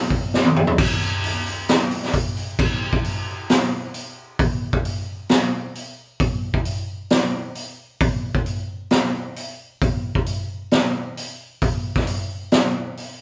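Early on, a drum fill at 0.3 seconds launches this angsty, brooding rock passage, cut from a longer piece. The raw garage drum kit then drives a straight 4/4 at 133 BPM with crash cymbal, hi-hat, toms, a high-tuned snare and a boomy kick. Its gritty, saturated sound sits up front with a rolled-off top, and light reverb gives it the feel of a band playing live in one small room until the drums stop at 13.1 seconds.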